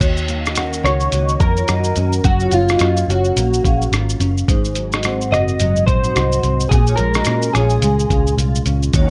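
Muffled, thumpy sampler-style drums with a swung sixteenth-note feel, a dark, round foam-muted electric bass, a full-bodied fingerpicked nylon-string guitar with warbly drift and a ringing, metallic vibraphone with analog chorus and slapback echo set up a laid-back, dreamy indie and bedroom pop groove at 108 BPM over Ebm7, Gbmaj7, Ab7 and Bbm7, before a slightly broken-up, compressed electric guitar carries the up-front melody from 0.8 s and a lush, vintage sawtooth string machine slips in with sustained chords at 8.9 s in this short cut from a longer piece.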